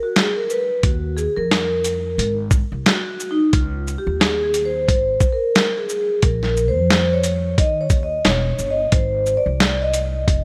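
Smoky and cool, this jazz-hop excerpt moves at 89 BPM in 4/4 with a swung sixteenth feel, its chords drifting from G#m through suspended and open harmonies to settle on G#. A mellow, airy vibraphone played with soft mallets opens at 0.0 seconds and solos throughout, its metallic ring shaded by a slow motor vibrato. A gritty, compressed sampler-style drum kit with a thumpy kick, medium-tuned snare, hi-hat and shaker arrives up front at 0.2 seconds with an overdriven, small-room character, and a woody, dark pizzicato upright bass on gut strings joins at 0.8 seconds, all set in light studio reverb.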